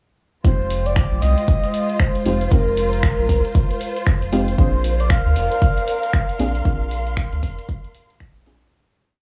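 A four-on-the-floor overdriven kick sits up front at 116 BPM in 4/4, with a swung sixteenth feel, while a punchy analog drum machine adds finger snaps and closed and half-open hi-hats and a grainy tube shaker plays hand-played sixteenths in the background. This moody, late-night deep house piece in F dorian moves from Fm9 to Bb9 at 4.6 seconds. A rubbery, hollow square bass drives a syncopated riff with sidechain pumping, and deep, mellow chord stabs with chorus and analog delay push rootless voicings alongside a dark analog pad that breathes with the same pumping. A breathy, flute-like synth lead carries a motif-based melody of call phrases with vibrato, chorus and tape echo, and a lush symphonic string section adds slowly shifting bowed chords. The sound is dry and gritty with small room ambience, and the groove fades out from 6.0 seconds to the end at 8.7 seconds.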